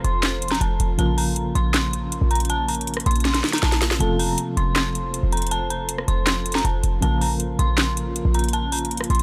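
A half-time trap groove of sharp snare, metallic hi-hats, handclaps and rim clicks sits up front with a punchy, tight 808-style bass, a drum fill breaking in at 3.2 seconds, while an eerie, inharmonic synth bell warbles through chorus and phaser over round electric-piano-like keys with tremolo and a glassy FM pad in the background, giving this short, dry, menacing and melancholic hip hop cut its dark edge.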